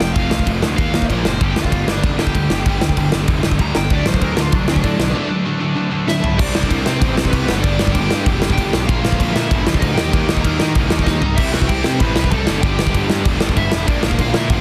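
A big, up-front rock kit drives this energetic, rebellious punk rock fragment in a straight 4/4 at 193 BPM, with a punchy kick, a medium-tuned snare, bright crash cymbals, toms and a drum fill leading into the second section at 6.4 seconds. An overdriven semi-hollow guitar carries the melody with a solo over the opening 6.4 seconds, while two double-tracked rhythm guitars, one sludgy and overdriven and the other scooped, bright and high-gain, churn out riffs in the background above a growly fuzz bass. The sound is dry, dense and heavily limited, with chords moving through F and D before settling into a C, G, Bb and Eb pattern.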